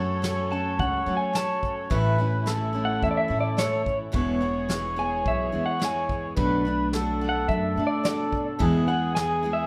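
This short cut from a longer piece has a gently roomy sound, set in a large studio reverb that keeps the small band close and intimate. It is peaceful acoustic folk in E mixolydian at 108 BPM in a straight 4/4, moving through F#m, A, E, Bm7 and back to E. An electric guitar through a small old amp carries the melody from 0.5 seconds, sitting up front with a slightly broken-up, compressed, lo-fi tone and tremolo. A reedy, mellow accordion plays a second line with slow beating, while a picked steel-string acoustic guitar gives the accompaniment, finger squeak and all. Underneath, a woody, growly pizzicato upright bass anchors the low end, soft brush drums with a tight kick and medium-tuned snare run from 0.2 to 9.3 seconds, and a muted, veiled chamber string section holds sustained bowed chords in the background.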